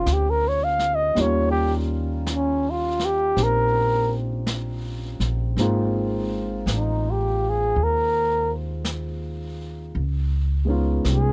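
A slow 4/4 swing at 55 BPM carries this melancholic, smoky jazz ballad fragment, where a breathy, whispered flugelhorn with soft attack and vibrato solos intimately up front over a dark, long-sustaining grand piano, woody pizzicato upright bass and a vintage brush kit of brushed snare and hi-hat, captured in a dry, close 1970s-style studio sound as the harmony moves through Bbm11, Eb7, Ab69 and Db9.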